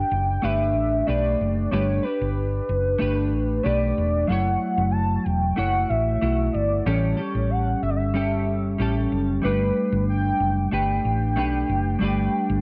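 A velvety, wave-folded synth lead carries the melody from the opening moment, smoothed by analog chorus and tape echo, while a dark, clean semi-hollow electric guitar plays picked, compressed accompaniment with its own chorus and vibrato. A round, amped, short-scale fingered bass joins at 0.1 s, sitting up front with tube saturation as the harmony moves from Gadd9 through F#m7 and A7 and back to Gadd9. This laid-back, hazy bedroom pop fragment of a longer piece sits in a moderate spring reverb and worn cassette tape, whose warbly pitch drift adds to the indie pop haze.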